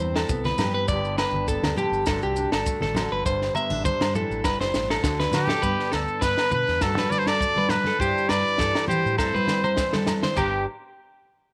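A bright, vibrato-laden trumpet enters up front at 5.4 seconds over a twangy, slightly broken-up electric guitar with slapback echo, a fingerpicked acoustic guitar with finger squeak, a round, dark fingered bass, a compact drum kit with a high-tuned snare and punchy kick, and background agogo bells, maracas and low-tuned congas, giving this carefree, danceable highlife excerpt a swung, small-room feel.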